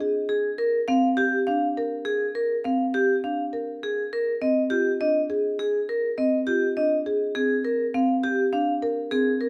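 Meditative yet urgent, this short excerpt of minimalist classical pattern music in 3/4 pairs woody marimba arpeggios on padauk bars, played with medium mallets, with a metallic, ringing vibraphone melody struck with medium hard mallets and its motor off, both sitting up front in a moderate large-studio reverb as the harmony moves from Bbadd9 to Fm7 and back.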